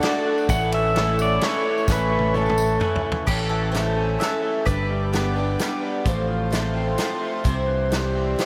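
A dreamy, reverb-soaked mix carries this nostalgic, jangly folk and heartland rock fragment in 3/4 at 129 BPM in A mixolydian, where a shimmering, octave-doubled twelve-string acoustic guitar, a slightly broken-up lo-fi electric guitar riff with lush chorus, a dark, round fingered bass up front and a natural country drum kit with punchy kick form the bed, a clean pedal steel sings the melody through diffuse ambient delay until 2.8 s, a jingly tambourine and a barely audible clear grand piano sit in the opening, a woody mandolin adds a brief second line at the very start and returns with it at 3.3 s, reedy gut-string chamber strings hold sustained chords in the background, and a drum fill leads into the second section at 3.3 s as the chords move from A through G and F/A to C.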